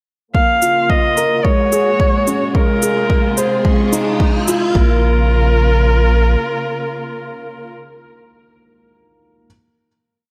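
A dark, woody viola carries the melody in this short, intimate and moving piece of piano and strings electronica, a single bowed player with vibrato and a sul tasto touch, sounding distant yet up front as it shapes song-like motifs. It sits over a mellow concert grand piano playing a 16-step arpeggiated riff through a digital delay, its boxy tone and audible action noise giving the part a close, personal character. A round analog bass with long gliding notes and a close studio string section holding sustained chords with portamento both pump under sidechain compression, while a filter sweep works on the strings through the build. At 109 BPM in 4/4 and Bb minor, a punchy four-on-the-floor electronic kick and an overdriven shaker supply a restrained pulse, and a riser enters at 2.7 s to lead into the final Bbm chord at 4.8 s. The piano carries on alone until 9.5 s, and a moderate concert hall reverb adds space to the whole.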